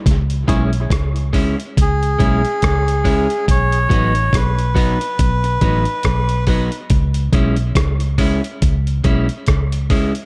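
A reedy, breathy melodica carries the melody from 1.8 to 6.4 seconds, sitting up front with tape echo trailing its nasal, airy tone. This deep, heavy dub reggae cut, taken from a longer piece, moves at an unhurried pace with a swung sixteenth-note feel over a short chord cycle that returns home at the end. Underneath, a vintage muted fingered electric bass sounds round, amped and foam-muted, placed up front beside a dusty soul sampler-style drum kit whose compressed, gritty hi-hat, thumpy kick and rim click were re-recorded in a large room. An electric guitar at the edge of break-up, picked and slightly broken-up, adds quieter accompaniment through tape echo. A brief, hollow percussive organ stab, mellow and decaying, with chorus and echo, sounds only at the opening. The production is dark and warm, set in light reverb.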